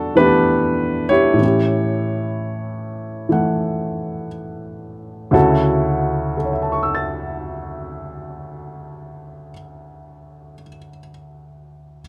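Close, detailed and nearly dry, this twelve-second fragment of relaxed, swinging solo jazz in D major features a single intimate, up-front baby grand piano with audible action noise, moving at a slow 57-66 BPM that eases back over its first 5.3 seconds as the harmony passes from Em11 to A7 before settling on Dmaj9.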